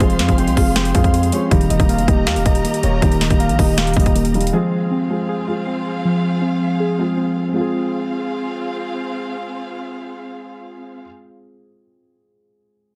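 This excerpt from a longer hip hop and trap piece moves in a half-time 4/4 feel, with an overdriven trap kit of hard-clipped kick, sharp snare and metallic hats sitting up front for the first 4.5 seconds alongside a distorted, saturated 808-style bass that hits heavy and aggressive before decaying. The mood is hard-hitting yet melancholic, shifting from F minor to E-flat and back. Muted felt-like synth keys carry dark, intimate arpeggios through a low-pass filter with chorus and digital delay, while a felt-muted upright piano adds mellow, short-sustained accompaniment, also filtered, and is the last part heard, stopping at 12.9 seconds. Above them, a studio string section holds sustained bowed chords with vibrato, portamento and a smooth top, and a round, octave-layered synth lead with detuned chorus and delay sings a soft second line from 0.2 to 4.1 seconds. The mix carries light reverb and a dense, heavily limited modern master.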